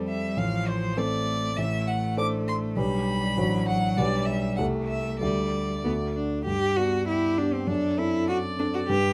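Cello and piano open together at 0.0 seconds, and the violin joins a moment later in this quick, cheerful classical-period movement for piano trio in G major, taken from a longer piece and moving at 100 BPM in a lively, straight 2/4. The concert grand carries the accompaniment with a deep bass and sits up front, while the solo cello plays a rich, bowed second line with vibrato, close and prominent in the mix. The violin takes the melody in a smooth, even bowed tone with vibrato, heard as a single player set a little further back than the others. The harmony passes through chords such as F/A, G/B and Am7/C before leaning on a Dsus4 that settles onto D, and a new section begins at 6.5 seconds on a G chord. The recording uses close, detailed microphones with light reverb, giving the trio a clear and intimate sound.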